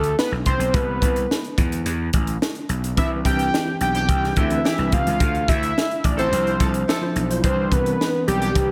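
A fat, sawtooth-edged analog lead with sub-octave weight, vibrato and a filter sweep carries the melody from the start of this upbeat, breezy slice of polished 1980s jazz-funk pop. It rides over a growly, overdriven slap bass and a crisp acoustic drum kit with a punchy kick, a high-tuned snare and gated reverb in a small, pumping room. At 3.0 seconds a bright, clean tine electric piano with ensemble chorus joins on chords, and from 3.9 seconds a distant, roomy jazz horn section adds a second line low in the mix, as the harmony moves through lush ninth chords under a light reverb.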